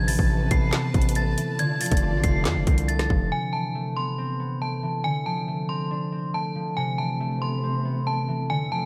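A melancholic, dark trap excerpt in a half-time feel, where a bright, inharmonic FM bell rings out the melody over fingerpicked concert harp throughout, while a lush bowed string section holds chords, a saturated, distorted 808-style bass growls, and a trap kit with hard-clipped kick, woody snare, handclaps, rim clicks and metallic hats drives the opening until the drums stop at 3.2 seconds and the bass at 3.3 seconds, leaving bell and harp alone before the strings return at 6.8 seconds in a dry, close mix.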